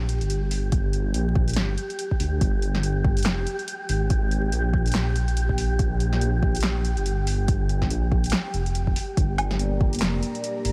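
Cavernous and heavy, this deep dubstep excerpt moves at 142 BPM in a swung half-time feel in G phrygian over a Gm chord, built on an up-front, rumbling detuned saw bass with tube saturation and an airy, breathy wind-like noise texture bathed in its own reverb, joined by an overdriven deep house kit of handclaps, hi-hat, punchy snare and woodblock, and then by an overdriven electronic kick at 0.7 s, until a moody analog pad with chorus arrives at 9.4 s, all set in a dry mix under a layer of vinyl crackle.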